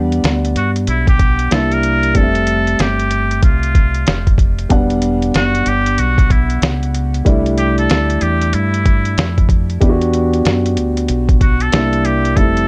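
A dark, mellow grand piano with audible action noise and a round, deep fingered electric bass open this cool, nocturnal jazz-hop excerpt at 94 BPM in E minor, joined at once by a muffled, pitched-down sampler drum kit with a thumpy kick and 12-bit grit, while a nasal straight-muted trumpet with tape echo enters at 0.6 seconds and takes a solo from 4.7 seconds over a swung groove and dark, warm production.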